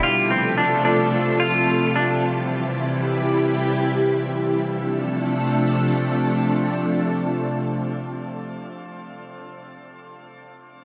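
In a straight 4/4 that slows through the first 4.6 seconds, somewhere between 94 and 111 BPM, this haunting, melancholic dream pop excerpt in D minor drifts over F, C and then Dm7. A silky, warbling string machine holds sustained chords up front with ensemble chorus through 9.4 seconds. A bright, hollow-body semi-hollow electric guitar picks clean, compressed arpeggios with subtle chorus and tape echo until 2.2 seconds, all bathed in a long, wet shimmer reverb.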